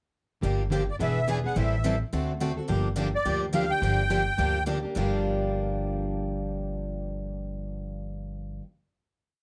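Jazz manouche at a brisk 212 BPM in G minor, this short, bittersweet and swinging piece sets a reedy, shimmering musette accordion melody of motif-based phrases from 0.9 to 4.6 seconds over a parlour-toned plugged-in steel-string guitar picking four to the bar with short accents on two and four, a bright, boxy second rhythm guitar, and a woody, thumpy pizzicato upright bass on gut strings playing a two-beat root-and-fifth line, all in light reverb before settling on a final chord at 5.0 seconds.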